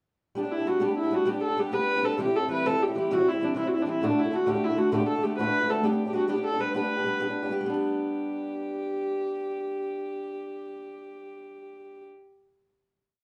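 A moderate studio reverb frames this short, complete Celtic slide, a rollicking and cheerful folk piece in G major at 132 dotted-quarter beats per minute in 12/8. A single bowed viola carries a motif-based melody in period phrases, its tone dark, pure and floating with a soft attack. A warm, fingerpicked steel-string acoustic guitar supports it with driving strumming on open chord shapes through G, C and D; both sit up front, and the piece closes on a final chord from 7.7 seconds.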